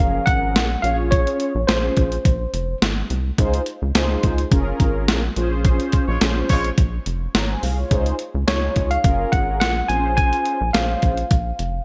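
Feel-good and danceable, this early-eighties boogie funk cut moves at 106 BPM in a straight 4/4, built on a crisp 8-bit drum machine with a thumpy kick, medium-tuned snare and hi-hat under gated reverb, and a rubbery, hollow square bass sitting up front. A worn, slightly out-of-tune tine electric piano carries the melody in two short phrases, lightly overdriven with slapback echo, while mellow synth brass with chorus and phaser supplies dark, round chords moving through Gbmaj9, Bbm9 and Dbmaj7. A tight vintage horn section adds a brief second line at 6.1 seconds during a band accent, all set in light reverb in this piece cut from a longer track.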